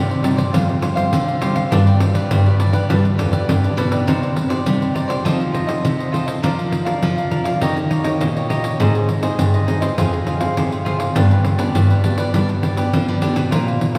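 A straight 4/4 pulse at 102 BPM drives this lively, nostalgic samba and choro passage, cut from a longer piece, with a jingly, close pandeiro up front from 0.1 seconds. A fingerpicked classical nylon-string guitar carries warm accompaniment up front beside a mellow, crisp picked cavaquinho, while a second nylon-string guitar, dark and woody with old strings, plays the bass line in the background. The harmony opens on Cmadd9 and shifts at 4.1 seconds into a longer passage through F7, Eb7, Ab and Fm before settling on G, all set in a church or concert hall with a wet cathedral reverb.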